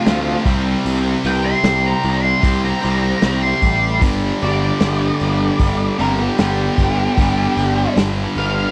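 A growly, overdriven fuzz bass sits up front in this gritty, swaggering slice of blues rock and southern rock, picked in the low register and carrying a bright, amped edge. It moves at 76 BPM in a straight 4/4, rooted in G mixolydian, with the harmony shifting from a C5 chord to G at 4.0 seconds. A bright, double-tracked distorted guitar plays a tight riff alongside it, while a dark octave-fuzz lead guitar carries the melody high above, its tone thickened by slapback echo. Tucked in the background, a compressed, slightly broken-up second lead guitar traces a quieter supporting line. A vintage acoustic drum kit plays hi-hat, kick and snare with a muffled, lo-fi character, a tight kick and a rolled-off top. The whole cut has the dry, close feel of a small-room 1970s-style studio session, and it is a brief fragment taken from a longer piece.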